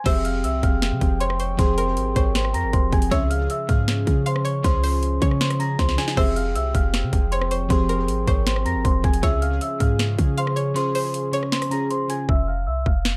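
Menacing and hard-hitting, this dark half-time trap piece at 157 BPM in F harmonic minor sets a bell-like celesta melody over glassy, chorused digital keys, a twangy string-like resonator pluck with tape echo, mellow brass chords in the background and a deep, boomy 808-style bass, beneath an overdriven, up-front trap kit with a hard-clipped kick, sharp snare and metallic hats that fills at 5.8 seconds and breaks at 10.8 seconds before the hats drop out at 12.3 seconds.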